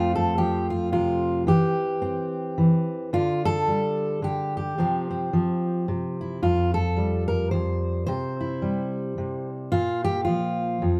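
A full-bodied, up-front jumbo steel-string acoustic guitar fingerpicks a gentle, pastoral solo folk passage in a lilting swung 3/4, moving through chords such as F, C/E, Csus4 and Fsus2 before settling on Bb5 at 9.7 seconds, all ringing out in a moderate stone-room reverb in this short section cut from a longer piece.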